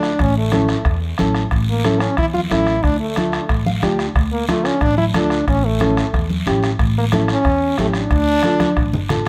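Cumbia in D harmonic minor, this danceable, fiery fragment is cut from a longer piece and moves at 182 BPM in a straight 4/4 over A, Dm, A7 and Dm. A clear French horn carries the melody up front in a classical style, with light vibrato and a tape echo on its lines. Beneath it, a thumb-plucked nylon-string guitar on old strings gives a woody classical accompaniment and adds a short fill at 3.5 seconds. The pizzicato upright bass, strung with steel, sounds warm in its low register, while a soft-beater bombo and a raspy guiro sit in a small room. Congas with thick skins and hard hands join at 0.5 seconds, close and dry in the background, and a drum fill at 8.6 seconds closes the fragment, all within a light reverb.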